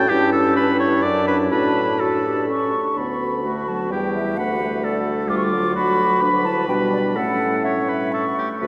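In a 3/4 at 128 BPM, played with a rubato feel, this lively, spirited classical-period movement for wind quintet in D major is cut from a longer piece. The silver concert flute carries the melody high between D5 and D6, its airy, metallic tone softened by vibrato and a gentle attack. Close-miked and up front, the oboe sings a clear second line between F4 and G5, while the mellow clarinet sits in the background and the French horn adds its own mellow accompaniment. Beneath them, the dark bassoon anchors the bass from D2 to B2 with a smooth top and light vibrato. All five play from the start through 8.7 seconds, moving into a new section at 3.0 seconds, where a Dmadd11 colour briefly passes before the harmony turns through G/B to A. A wet cathedral reverb with a long 4.7-second decay bathes the ensemble in a spacious, resonant cathedral ambience.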